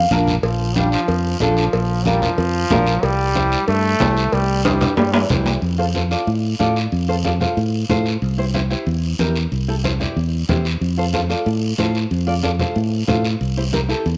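A straight 4/4 cumbia groove drives this joyful, danceable excerpt, with raspy guiro and ringing congas set in the background beneath a growly, punchy electric bass up front and a small, fingerpicked nylon-string guitar, while a brilliant trombone with vibrato and ringing metal-shell cowbell and timbales drop out after about 5.5 seconds, and the mix sits in a moderate echo-chamber reverb.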